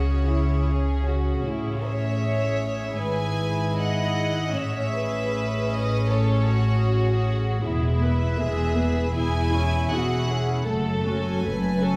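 Heard from further back in a reverberant scoring stage, this excerpt of a slow romantic movement for string orchestra unfolds at 78 BPM in a rubato 4/4, elegiac and solemn, over harmony that begins on C#m and passes through Amaj7 and E before arriving at F#m. A clear, floating violin section carries the melody while a dark, intimate second violin section with light vibrato and a smooth top sings a second line, every section bowed sul tasto. Warm violas supply the accompaniment, and pure, close cellos and double basses with soft attacks anchor the bass across the full 12.0 s.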